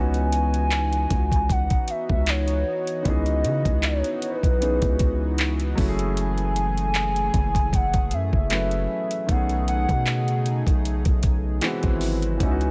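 A hollow, woody clarinet-like synth lead carries the melody from the start over a clear, intimate grand piano with audible action noise, a shimmering pulse-width pad that pumps against the sidechain, and a deep, sine-toned 808-style bass, all moving through C#m11, F#m9, B13 and G#7alt in C# minor. At 0.1 seconds a smooth electronic R&B kit joins up front, its knocking kick, metallic hi-hat and handclaps roughened by vintage 12-bit sampler grit and lightly swung at a slow 77 BPM. The lead is softened by chorus, vibrato and digital delay, and the whole excerpt of contemporary R&B sits in a digital ambience with a longing, moody air.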